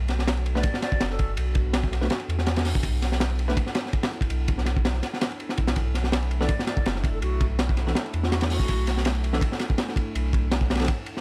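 Drum and bass with a jungle feel, this short cut from a longer piece runs at 164 BPM in B minor, sitting on a single Bm7 chord with a nostalgic, dark mood and a light swing on the sixteenths. A crunchy breakbeat kit sits up front with a tight kick, high-tuned snare, hi-hat and dark ride cymbal, its saturated, gritty tone rolled off at the top, while a soft, round dub sub bass with tube saturation holds the low end from the start. Behind them, a warbling, lo-fi tape-like pad sustains chords with chorus, built-in reverb and vintage sampler grit. At 0.6 seconds a breathy, hollow concert flute with vibrato and dub echo slips in for brief melodic phrases, returning at 6.4 seconds, alongside bell-like, clean electric piano stabs that also carry dub echo. The whole recording has a dry, hardware-tinged studio character.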